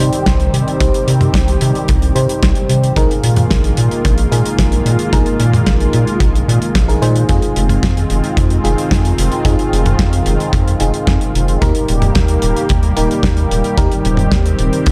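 A round, deep analog bass pumps under a lush, detuned sawtooth unison pad with chorus and phaser in this driving, nocturnal synthwave fragment at 111 BPM, alongside a dreamy FM electric piano with a soft pad layer playing chorused stabs through digital delay, a dry, damped 70s drum kit of hi-hat, medium-tuned snare and toms, a boomy, gritty kick from 0.3 s, and a barely audible swell at 14.9 s, all moving through Cm, Bb7sus4, Fm7 and Eb in a dark production with a small-room reverb.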